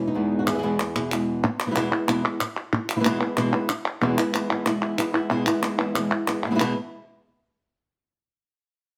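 Festive and fiery, this brief flamenco excerpt cut from a longer piece moves at a brisk 186 BPM in a straight 4/4, centered on E major. One fingerpicked flamenco guitar carries the melody up front from the start, its tone warm, with finger squeaks audible on the strings. A second guitar, brighter and also fingerpicked with its own squeaks, adds stabs, dropping out at 1.4 seconds and returning at 4.0 seconds. Crisp, close palmas hand claps join at 0.5 seconds and sit up front alongside the lead guitar. The whole performance rings out in a wet stone room with a reverb tail of about 1.0 seconds, lending the intimate playing a lively, resonant space.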